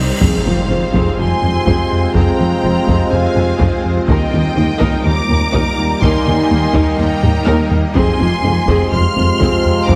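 A smooth, gliding synth bass riff anchors this brooding, futuristic cut from a hybrid orchestral and electronic film score in F minor at 124 BPM, moving from Fm to Eb and back over a swarming, warbling drone with a phaser. A huge, bright cymbal swell opens the excerpt and hits an impact at 0.2 seconds, as distant, lush violin sections carry the melody and a second line above viola, cello and double bass sections, with mellow French horns and dark trombones holding sustained chords in the background. Hard-stick taiko drums drive underneath and play a fill at 7.2 seconds, all set in a moderate scoring-stage reverb with a heavily compressed, radio-like sound.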